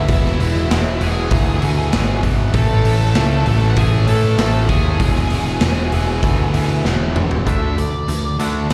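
Heard live through a venue PA with recital-hall reverb, this cathartic, anthemic quiet-loud alternative rock piece rides on a growling, overdriven picked bass and a gritty, saturated garage drum kit with a punchy kick set up front, beneath a bright, double-tracked overdriven guitar riff and a dark octave-fuzz lead melody carrying slapback and tape echo, until a drum fill at 6.8 s leads into half time at 7.5 s, where a clean, twangy fingered guitar enters with arpeggios.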